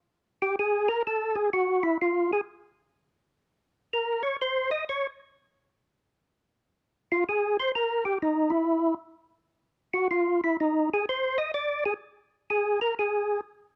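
A gritty, overdriven tonewheel organ plays alone, its percussive third-harmonic attack and chorus vibrato sitting up front through a stopped rotary speaker in a smoky, soulful jazz excerpt at 126 BPM with a swung 4/4 feel. The solo runs from 0.4 to 13.4 seconds across two passes of the same section, staying between Eb4 and Eb5. Close, detailed microphones and little reverb keep the full, dry tone intimate.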